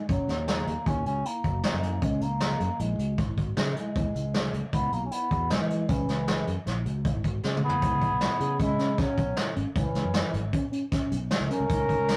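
Progressive instrumental band music in 5/4 at 155 BPM and C# dorian, intricate and driving, where a mellow, distant bass clarinet carries the melody over mellow tine electric piano arpeggios in the background, a bright, growly fingered electric bass and an up-front vintage brush kit with a punchy kick, until a drum fill at 7.4 seconds leads into a new section where a roomy flugelhorn with light vibrato adds a second line from 7.6 seconds, all captured as a rough rehearsal-room recording with saturation and a short booth ambience, cut from a longer piece.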